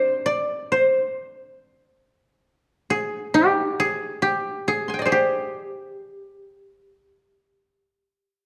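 A dark production places a solo koto close up front, with a recital hall's reverb ringing around it. This is a short fragment of Japanese traditional music, about 8.5 seconds cut from a longer piece, and its mood is calm and austere. The koto plays alone throughout, played with fingerpicks, and its tone comes across woody and dry even as the hall blooms behind it. The phrasing is rubato in a metre of four, unfolding freely within a range from C4 to C6. The single instrument and the reverberant space give the passage an unhurried, meditative stillness.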